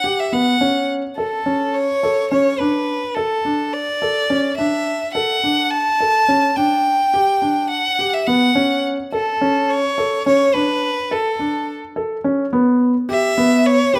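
Shimmering and hopeful, this contemporary instrumental excerpt moves at 212 BPM in eighths through a straight 7/8 metre. A clear, focused violin carries the melody between A4 and A5, a single bowed player with vibrato, heard close and up front. Beneath it, a felt-muted upright piano plays soft, mellow arpeggios between B3 and A4, giving an intimate, warm bed that also sits up front. Both parts play together throughout, with the harmony drifting through rootless and suspended colours such as F#m/C#, Asus4/D and Em9 before settling on Em at 12.5 seconds as a new section begins. Detailed close microphones capture the pair inside a moderate recital hall reverb, lending an airy glow around the performance.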